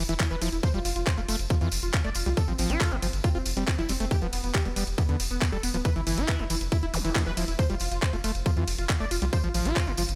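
Hypnotic and psychedelic, this 138 BPM psychedelic trance excerpt drives a tight, up-front electronic kick and a round, deep analog bass under a squelchy, distorted acid riff with tape echo and sidechain pumping, a thick detuned unison lead with phaser and digital delay, a garage kit of handclaps, bright hats and ride, a jingly tambourine, and a faint zap at 6.9 seconds, all set in digital ambience.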